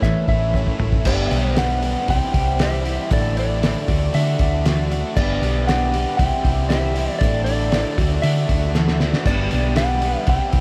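Warm and hopeful, this short cut from a longer folk rock and heartland rock piece moves at 117 BPM in a straight 4/4. An electric slide guitar carries the melody, its slightly broken-up, compressed tone trailed by analog delay, while a biting overdriven guitar, double-tracked, plays a riff beneath it. A shimmering, octave-doubled picked twelve-string acoustic guitar sits in the background with ensemble chorus, joined by a very quiet concert grand piano with deep bass and short sustain. Up front, a round hollow-body short-scale electric bass and a cloth-damped, thuddy drum kit with dark cymbals, a fat snare and a gritty, muffled lo-fi character anchor the groove, with drum fills at 0.0 and 8.7 seconds. A reedy, breathing pedal harmonium enters at 1.1 seconds with very quiet sustained chords as the progression cycles through G, C, Asus4 and Dadd9. The whole mix is soaked in a huge, dreamy ambient reverb.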